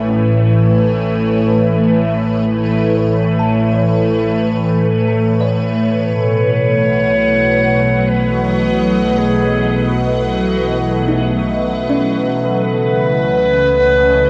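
A home cassette recording bathed in wet spring reverb holds this peaceful, serene ambient passage in A lydian, drifting in free time through Aadd9, B and C#m7 chords. Up front, a detuned, morphing wavetable pad sustains chords through ensemble chorus and phaser. Beneath it sit a dark, rumbling bass drone and a sawtooth analog drone with pulse-width shimmer, while a woody, band-limited kalimba fades in with tape-echoed arpeggios in the background, and a clear, classical-style clarinet enters at 5.8 seconds with a solo melody.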